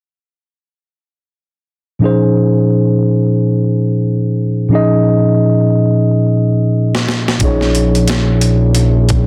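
Opening at 2.0 seconds on a mellow, clean tine electric piano holding a Bb minor eleventh chord, this late-night, soulful R&B and neo-soul fragment at 89 BPM in Bb minor, with a swung sixteenth feel, brings in a gritty, pitched-down, overdriven boom bap sampler-style drum kit of thumpy kick, high-tuned snare and hi-hat at 6.9 seconds, inside a fill that runs to 7.4 seconds. A fat, saturated analog bass with a fast-attack filter pluck then joins at 7.4 seconds, all three parts sitting up front in light reverb on a dense, heavily limited modern master.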